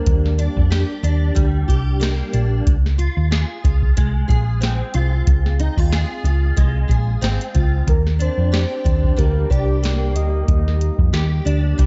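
Laid-back and nostalgic, this bedroom-pop excerpt sets a full-bodied picked dreadnought acoustic guitar, shimmering with ensemble chorus and a warbly pitch drift, over a dark, round hollow-body electric bass sitting up front and a tape-softened vintage rhythm box with deep kick, crisp snare and metallic hats, while a soft octave-layered synth lead with subtle chorus and tape echo flickers in at the very start and returns at 7.9 seconds to carry the melody as the chords drift from Ebmaj7 to Dbmaj7 and back.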